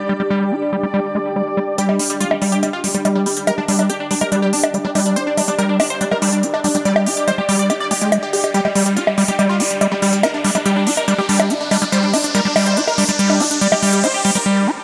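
A lush hall reverb surrounds this intense, psychedelic trance passage in straight 4/4, cut from a longer piece. From the opening, a squelchy, gritty overdriven acid bass sits prominently with a resonant filter sweep and tape echo. Behind it, a bubbling stepped-filter texture holds sustained chords through chorus, while a cloudy, evolving granular pad adds a mellow, blurred haze. At 1.8 s a punchy, detuned supersaw stab carries the melody through phaser and tape echo. At the same moment, crisp electronic hi-hat and bongos arrive close and tape-warm, re-recorded in a large room, as a build-up begins. An electronic riser enters at 6.2 s and climbs toward a brief break at 14.5 s.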